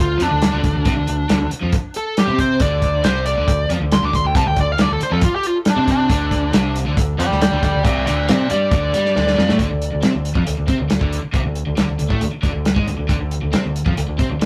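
Swaggering and brooding, this classic rock passage in D minor moves at 137 BPM with a straight 4/4 feel, cut from a longer piece and captured as a rough rehearsal-room recording with light reverb. A bluesy lead guitar, distorted and fed through analog delay, plays an up-front solo until 9.6 seconds, closed by a drum fill from the dry, damped 70s kit starting at 9.2 seconds. Underneath, two crunchy overdriven guitars play picked riffs in the background, while a growling, punchy fingered bass with overdrive anchors the low end.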